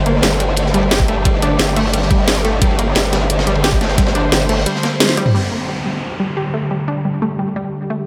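A dreamy, reverb-soaked mix opens this short cut from a dark, technical drum and bass track, whose mood is mechanical and aggressive. A swarming, detuned drone holds tense, evolving granular chords throughout, while a lush, punchy sawtooth pluck with ring modulation spins arpeggios through a diffuse ambient delay, and both pump against the beat. Up front, a growling, wobbling bass with formant filtering, tube saturation and chorus snarls over the opening seconds. The drums pair a cracking, up-front electronic kit with a gritty, rolled-off breakbeat kit set in the background, and a knocking electronic kick joins at 1.0 s. A drum fill and band accent at 5.0 s lead into a closing stretch where a filter sweeps across the drone and a downlifter falls in from 5.3 s.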